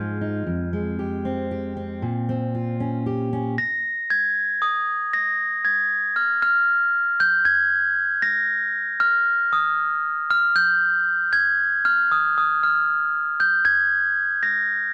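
A 3/4 folk pulse at 116 BPM, straight in feel, sets this stirring, wistful excerpt in F minor, cut from a longer piece. A fingerpicked steel-string acoustic guitar opens alone, its fresh strings giving a full-bodied jumbo tone up front as it moves from Fmadd9 to Bbmadd9 during a build-up. At 3.6 s the guitar stops and the harmony drops away, leaving a glockenspiel played with rubber mallets to carry the melody until 14.9 s. Its ringing, bell-like voice stays mellow and soft, sitting forward and clearly above where the guitar had been. Moderate studio reverb and a dark, warm production lend the short passage a warm glow.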